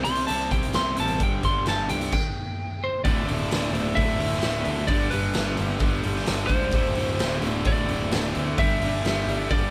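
A raw, live-in-one-room sound carries this cut from a longer piece, with a moderate stone-room reverb around a band playing brooding, angsty quiet-loud alternative rock at 130 BPM in a straight 4/4. The garage drum kit sits up front, gritty and saturated, with a punchy kick, a medium-tuned snare, hi-hat and crash in a bright, pumping room, though its top end is rolled off. A slightly broken-up, compressed lead guitar carries a high solo melody through the opening section, and a stop from 2.1 to 3.0 seconds precedes the move into a new section built on Dsus2 and G. Beneath it, a compressed distorted guitar and a thick fuzz guitar pick low riffs in the background, while an overdriven, fuzz-toned bass, punchy and direct, anchors the bottom. At 3.0 seconds a very quiet, double-tracked tight distorted guitar joins with a riff of its own for the second half.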